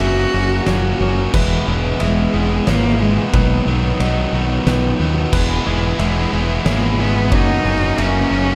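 Euphoric and hopeful, this short post-rock excerpt moves at 90 BPM in 3/4 through E lydian, with a rich, bowed cello carrying the vibrato-laden melody in a diffuse ambient delay while a bright, overdriven electric guitar riff and a growling, punchy fingered bass sit up front. Behind them, a felt-muted upright piano plays intimate arpeggios with audible action noise, an oversized low-tuned drum kit brings a fat snare, boomy kick and dark cymbals until 8.1 seconds, and a tight distorted guitar riff joins at 5.3 seconds. The whole dreamy mix is soaked in cathedral reverb over chords that move from F#7 through E and B, then return through E to F#7.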